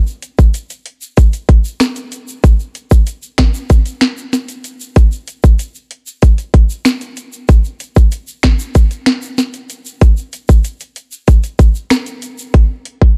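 Bouncy and sunny, this straight-feel dancehall groove at 95 BPM is an excerpt from a longer piece, driven by an up-front electronic island pop drum kit with a tight kick, sharp snare, metallic hi-hat, rim clicks and finger snaps, alongside a bright, compressed, saturated egg shaker sitting low in the mix, all set in a dark digital ambience.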